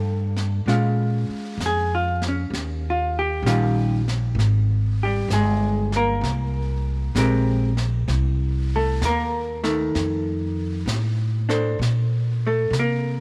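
Swung eighths at 65 BPM in 4/4 carry this intimate, tender jazz ballad excerpt, where a dark, clean hollow-body electric guitar accompanies up front through chords moving from Bbm7 and Eb9 to Abmaj9 and Bbmaj7sus2, alongside a woody, growly pizzicato upright bass, while a brushed kit with a high-tuned snare and hi-hat enters at 0.4 seconds and sits low in the mix, all in a small room with light reverb.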